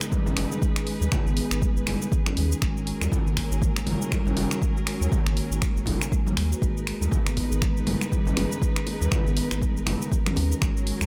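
A punchy, layered electronic kick drives this spiritual afro house excerpt in G# minor at 120 BPM, its 16th notes swung at 58%. Beneath it, a round analog bass with a deep, dark sine-like tone and a filter sweep holds sustained low notes and pumps against the kick. A soft-mallet marimba plays mellow, woody arpeggios with an airy quality, roughened by vintage 12-bit sampler grit and trailed by digital delay. Lush bowed strings sustain chords with vibrato and a smooth top, also pumping with the kick, as the harmony moves from G# minor to F# at 2.6 seconds and back at 6.6 seconds. A produced deep house kit adds finger snaps, hi-hat, shaker and toms, while ringing congas sound distant as if in a large room, and low-tuned bongos join in the background at 8.0 seconds. A small room ambience surrounds the driving groove.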